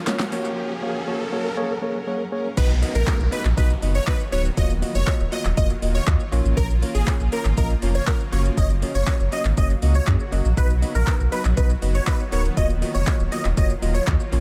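Bittersweet and energetic, this 120 BPM dance-pop excerpt in Eb minor opens with a brief build-up of riser effects, a drum fill and a blurred, evolving granular cloud pad over mellow tine electric piano, then drops at 2.6 seconds into an echo-heavy groove where a deep house drum kit with a deep kick, fat snare, metallic hats, crash, shaker and very quiet hollow group handclaps plays alongside a full, up-front sine sub bass with octave, while huge, lush supersaw chords with phaser and tape echo carry the melody through B, Ebmadd9, Bbm and Gb, with sidechain pumping on the pad, piano and bass.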